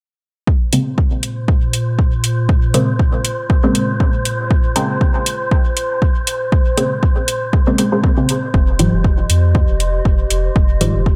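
Cavernous and deep, this dub techno fragment, cut from a longer piece, moves at 119 BPM in 4/4 with a light 16th-note swing, sitting in Bb dorian at a slightly lowered tuning of A4 = 436 Hz. An overdriven electronic kick enters at 0.5 seconds and sits up front alongside metallic, overdriven hi-hats, while a muted, detuned chord stab with a filtered pluck decays through chorus, phaser and dub echo. Beneath them, a warbling, nostalgic pad with a lo-fi, slow-blooming tone holds sustained chords, drawn through chorus and its own reverb and pumped by sidechain compression. An airy, breathy noise texture hovers on a single high pitch like wind, fading in slowly, pumping with the sidechain and lingering with a long release. The harmony rests on Bbm9 until a soft, round sub bass arrives at 8.5 seconds as the chord shifts to Fm9, its sustained low tones also pumping with the sidechain. A light digital ambience frames the whole mix.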